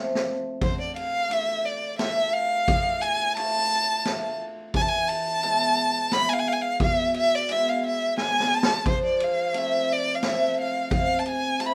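A dark, soulful violin sings up front with vibrato, portamento and a soft bowed attack over a mellow, shimmering hammered cimbalom and a boomy, rolled-off street-band drum kit of kick, snare and ride in this bittersweet klezmer piece in 3/4, all set in a moderate studio reverb, with a drum fill opening the cut and another at 8.2 seconds.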